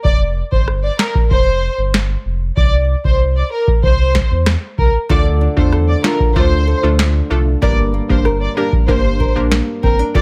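Sultry and hypnotic, this dancehall cut at 95 BPM rides a booming analog drum machine with a deep kick, crisp snare and rim click up front, a full sine-and-triangle sub bass with octave, and a lush bowed violin section carrying the melody through tape echo, while a crystalline, detuned wavetable pluck with chorus and a small fingerpicked nylon-string guitar playing arpeggios join at 5.1 seconds over chords moving from Fsus2 through C and Dm to Gm in a studio reverb.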